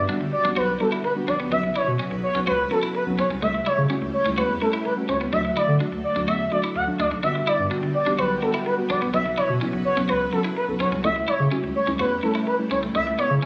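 An expressive portamento lead, smooth and up front with vibrato, chorus and tape echo, carries the melody in this summery, carefree pop excerpt at 126 BPM. Beneath it, a saturated sub bass gives thick low end, and a deep mellow chord stab adds dark, detuned, decaying chords. A clean semi-hollow electric guitar plays a bright picked riff through analog chorus, while a vintage string machine with cellos holds full sustained chords with ensemble chorus over Gmaj7, Bsus2, A7/C# and D, all heard as a phone capture in the room with club reverb, plate reverb and compression.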